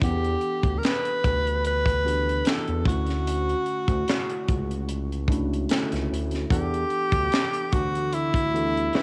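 R&B and neo-soul in E dorian at 74 BPM with a light sixteenth-note swing, this soulful, late-night excerpt pairs an up-front, breathy tenor saxophone melody with vibrato and scooped notes over a worn, slightly out-of-tune tine electric piano washed in lush chorus, a smooth gliding synth bass with portamento, and a tight funk drum kit with handclaps and a high-tuned snare, moving from Em11 to Dmaj9 at 2.9 seconds and back to Em11 at 6.5 seconds, all in a small room with the hazy softness of home cassette tape.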